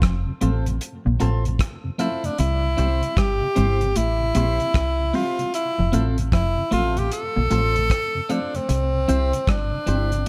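A sunny, warm roots reggae excerpt with a lilting swung feel, where a breathy tenor saxophone with light vibrato and tape echo carries the melody up front over a round, punchy dub bass and a dry, damped 70s drum kit of hi-hat, kick and rim click, while a dark fingered electric guitar riff and a soft, flute-like tonewheel organ with slow rotary speaker sit in the background, and a twangy, phased clean guitar adds accompaniment from 0.4 seconds over chords moving between F and C.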